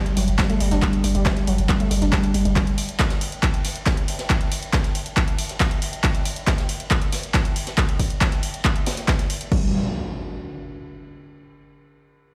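A punchy, overdriven analog drum machine opens this driving, relentless peak-time techno excerpt at 138 BPM in straight 4/4, its crash cymbal, handclaps and hi-hat sitting up front. A warbly, dusty pluck riff joins almost at once, built from detuned square and sawtooth layers with a noise layer, lo-fi and dark, treated with chorus, tape echo and sidechain pumping. Beside it, a round sine sub bass holds G1 under a G5 chord, and both parts fall away by 2.6 seconds. The overdriven electronic kick drum arrives at 0.4 seconds, sitting forward over a faint jazz brush kit whose high-tuned snare and pumping ride cymbal add a natural small-room texture. Near 9.5 seconds the harmony drops out, the pluck flickers back for a moment and an up-front electronic impact closes the passage, all heard as if played on a big sound system in a bare stone room with light reverb.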